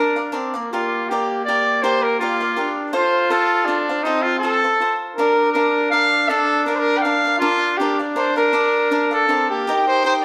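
A bright, up-front trumpet carries the melody in this proud, festive mariachi fragment of Mexican folk music, its classical-style tone sounding distant and roomy. A second trumpet, clear and also classical in manner, holds a lower supporting line beneath it until 9.7 seconds. An acoustic cavaquinho, picked and crisp, keeps up the accompaniment throughout at a brisk 161 BPM in a lightly swung 3/4. The harmony moves through Bb major and F before settling on Eb, just as a chamber violin section enters at 9.7 seconds with biting, earthy sustained chords and light vibrato. The band plays live together in one large studio room, wrapped in a wet reverb, and the clip is cut from a longer piece.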